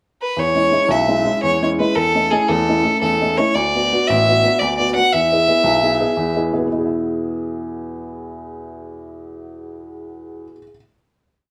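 Rollicking and cheerful, this Celtic folk piece moves at 114 BPM in a straight 9/8, set in E mixolydian. A rich, even-toned bowed fiddle carries a song-like motif melody with light vibrato from 0.2 to 6.4 seconds, while an intimate, woody upright piano with audible action noise plays oompah bass notes and chord figures, ending on a long-sustained final chord that lasts until 10.8 seconds. Both instruments sit up front in a wet studio ambience, with the band playing live together in one room.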